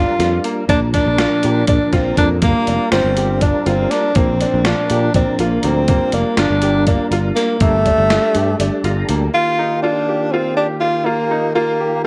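A breathy, up-front tenor saxophone sings a brooding jazz-style melody in G minor, with subtone, scooped notes and vibrato, over a round, dark tonewheel organ that is lightly overdriven, with chorus vibrato and a slow rotary speaker, and brilliant, worn piano arpeggios with a short sustain. This intricate progressive instrumental moves in a straight 7/8 at 243 BPM in eighths, anchored by a growly fretless electric bass and a gritty, pitched-down boom bap sampler-style kit with a thumpy kick and a high-tuned snare, all set in light digital reverb. The organ fills a break at 8.6 seconds, and after the drums stop at 9.2 seconds and the bass at 9.3 seconds, saxophone, organ and piano carry on alone over an Ebadd9 chord.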